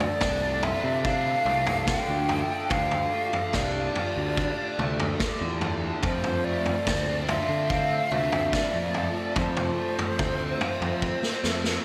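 A breathy, hollow jazz flute carries the melody through a delay, floating above a cranked stack guitar whose bright, double-tracked riff is overdriven and flanged, in this hypnotic, mysterious excerpt of psychedelic rock at 72 BPM in D minor. A punchy fuzz bass anchors the low end and a gritty, saturated vintage drum kit sits up front, while a very quiet string machine of violas warbles with sustained sawtooth chords as the harmony moves from Dm to F at 6.0 seconds. The dreamy mix is soaked in lush hall reverb, and the drums close with a fill from 11.0 to 11.8 seconds.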